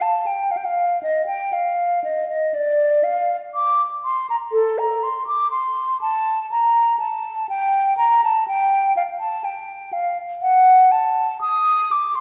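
Rubato phrasing stretches a slow 4/4 pulse of about 61 BPM in this introspective, flowing baroque-style classical fantasia for unaccompanied flute, a 12.2-second excerpt cut from a longer piece. The silver concert flute plays alone throughout, sitting up front with a mellow, hollow, airy tone, tongued notes and vibrato as it moves between A4 and Eb6. A wet recital-hall reverb with a 1.8-second decay surrounds the flute, making it sound as if heard from further back in the room.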